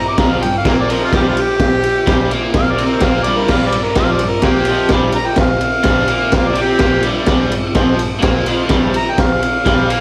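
Garage rock with a raw, swaggering mood at 127 BPM in a straight 4/4, cut from a longer piece and heard live through a club PA, where an overdriven harmonica with light vibrato solos from F4 to D6 over a bright, double-tracked guitar riff with slapback echo, while a gritty, up-front drum kit with a punchy kick, high-tuned snare, crash and ride enters at 0.2 seconds, all sitting on a single Fsus24 chord.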